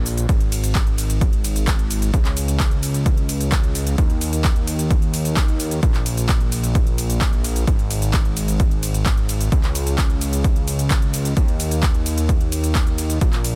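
A dense, heavily limited modern master with little reverb opens this short cut from a longer festival progressive house track, which runs in a straight 4/4 at 130 BPM with an uplifting, triumphant mood. A fat analog bass sits up front from the very start, its thick, detuned sawtooth tone carrying a wave-folded edge, a filter sweep and sidechain pumping as it holds low between Ab1 and Eb2. A layered big-room dance drum kit joins at 0.1 seconds with handclaps, crisp hi-hats, ride cymbal and shaker, re-recorded in a small room. A punchy, layered electronic kick drum enters at 0.3 seconds and is placed up front, the loudest part of the mix. The whole passage stays in one section, built on driving low end and crisp percussion.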